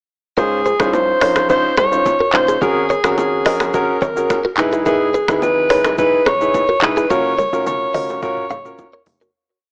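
A breathy alto saxophone leads this breezy, sunny afrobeats piece in Db major at 107 BPM, singing up front with light vibrato and a smooth top as it spins hook phrases from short motifs. A warm grand piano, also up front, plays syncopated chords, while a bright, clean electric guitar, recorded direct and compressed, picks an interlocking repeated figure doubled in thirds and trailed by tape echo. Underneath, an electronic afro-pop kit keeps a straight groove of soft kick, smooth hats, and syncopated rim clicks layered with finger snaps, joined by handclaps, shaker and toms, and a punchy, heavy 808-style bass bounces through a syncopated line with slides. Quiet, acoustic congas and bongos add a small-room pattern beneath it all. The whole short piece is one chorus moving from Dbmaj9 through Ab9sus4 and Emaj7 to Gbmaj7, and a drum fill arrives as the music fades out from 7.1 seconds. The sound is dry and gritty, with transformer saturation and a small-speaker character.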